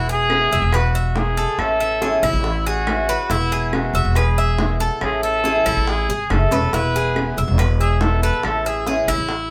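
Relaxed and danceable, this short cut of Cuban son and guajira moves at 140 BPM in E major, swaying between Emaj7 and Amaj7 as a breathy, whispered trumpet with soft attack and vibrato sings an intimate solo melody up front. Beneath it, a bright, metallic Cuban tres with double strings plays arpeggios, a boxy fingerpicked swing-style acoustic guitar supplies accompaniment, and a thumpy, gut-strung upright bass sits up front. Tight, high-tuned bongos keep the percussion going, a drum fill lands at 6.5 seconds, and woody claves stay in the background of a moderate studio reverb.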